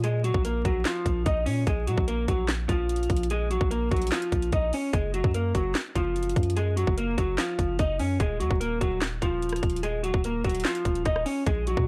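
A slightly broken-up, lo-fi electric guitar through a small old amp carries the picked, filtered melody up front, over a deep, mellow sine 808-style bass and an electronic trap kit of hard-clipped kick, sharp snare, handclaps, rim clicks and metallic hats, in this menacing, hard-hitting half-time trap excerpt at 147 BPM that moves from Bb5 to Gb to Ebm within a gritty, dry recording dusted with vinyl crackle.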